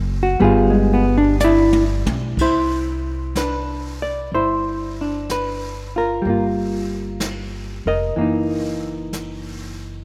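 A clean, dark, fingered hollow-body electric guitar sits up front in this intimate, late-night jazz ballad excerpt at 62 BPM with a gentle swing, carrying chords from G through Cadd9 and Gm7 to F#6 over a woody pizzicato upright bass, while a brushed drum kit with boomy kick and dark cymbals enters at 0.4 s and plays a fill from 1.4 to 2.4 s, all set in a dreamy mix soaked in plate reverb.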